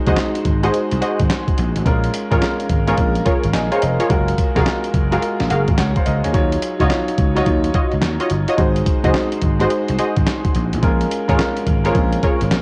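A clear, up-front concert grand piano opens this confident, slick new jack swing piece with shimmer-reverb chords through a cassette haze, joined at once by a growly, punchy slap bass, a gritty sampler-style drum kit with a thumpy kick, snare, hi-hat and handclaps, and a detuned sawtooth polysynth playing funky, chorused stabs in the background, all captured in a small room on a homespun cassette recording.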